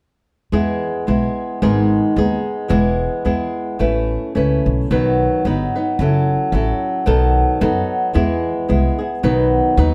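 Festive and proud, this short mariachi-style Mexican folk excerpt moves at 110 BPM in a lightly swung 2/4 in E major, with an up-front, fingerpicked flamenco guitar and a dark, woody pizzicato upright bass on steel strings playing together from 0.5 to 9.9 seconds through a chord progression that travels from E through G#m, Aadd9, B and F#m7 to B7, back to E and finally to B, all captured with close, detailed microphones and light reverb.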